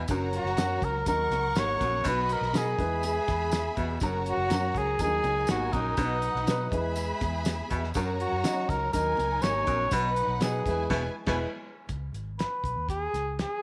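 Uplifting and joyful, this uptempo 1960s-style soul excerpt at 122 BPM sets a mellow, up-front cor anglais melody with slapback echo over lush bowed violins, a subtone baritone saxophone riff, a foam-muted round electric bass, a woody, slightly detuned upright piano, a cloth-damped thuddy drum kit with a fat snare, and jingly tambourine with very quiet high-tuned congas, all moving through a repeating F#, D#m, B, E progression before a band accent at 10.9 s gives way to a closing C#5 chord at 11.9 s.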